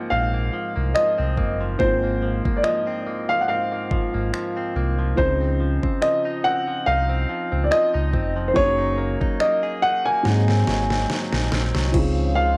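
A slow, gently swung 71 BPM groove in 4/4 sets a romantic, tender contemporary R&B mood in Ab mixolydian, carried by a produced drum kit with a knocking kick, deep snare, metallic hats, finger snaps and a crash, entering at 1.0 s and closing a fill at 11.9 s, over an up-front sine sub bass with octave. Up front, a warm grand piano with audible action noise sings the melody through analog delay, while a felt-muted upright piano adds dark, boxy accompaniment in the background and a twangy, direct-recorded clean electric guitar picks bright arpeggios with delay. A shimmering, retro chorused pulse-width pad slips in at 11.9 s for the final chord, all wrapped in light reverb and the warm character of a home cassette recording, cut from a longer piece.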